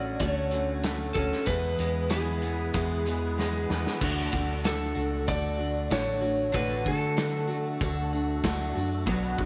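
A straight 4/4 groove drives this short folk rock and heartland rock passage. A loose indie drum kit comes in at 0.2 s with a tight kick, a medium-tuned snare and dark cymbals on hi-hat and crash, its pumping small-room sound placed up front, and a drum fill arrives at 3.4 s. A fingered hollow-body short-scale electric bass, round and amped, also sits up front, while a bright, full-bodied dreadnought acoustic guitar is picked through the chords with audible finger squeak. An electric slide guitar played with fingerpicks carries the melody in a compressed, slightly broken-up tone until 8.1 s, over a lo-fi riff from an electric guitar through a small old amp tucked in the background, and a fat, lightly overdriven tonewheel organ holds sustained chords behind them with key click, chorus vibrato and a slow rotary speaker. The harmony moves from Dmaj7 to E and settles on D, the hopeful, jangly mood framed by a moderate echo-chamber reverb, and a very quiet, jingly tambourine sounds briefly at 9.1 s.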